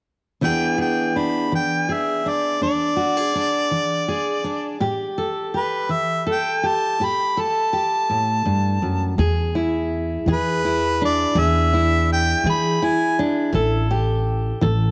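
Acoustic country blues in a slow, soulful and swaggering 12/8 at 55 BPM in E mixolydian, this excerpt puts an up-front harmonica with light vibrato, scooped notes and a smooth top in jazz-style solo over a fingerpicked jumbo steel-string guitar that sounds woody and full-bodied on old strings, while a growly, thumpy pizzicato upright bass joins at 9.2 seconds, all in light reverb, as the chords move from E7 to A5 and back, closing on A7(no3).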